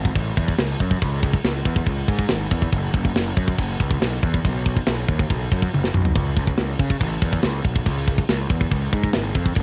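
A straight 4/4 pulse at 140 BPM drives this dark, epic heavy metal piece in C# minor, tuned to A4 = 438 Hz, cut from a longer work. A tight metal drum kit enters at 0.1 seconds with a tight kick, a medium-tuned snare, toms and bright crash cymbals, sitting mid-forward and up front with a cassette-tape coloring. The fuzz-laden electric bass carries the low end from the opening moment, its picked lines ranging from F#1 to C#3 with a growly, overdriven bite heard directly through the amp. A drum fill between 5.7 and 6.1 seconds breaks the steady groove before the section runs on to its close at 9.6 seconds. The room is dry, and the whole piece has the intimate, homespun character of a home recording on cassette.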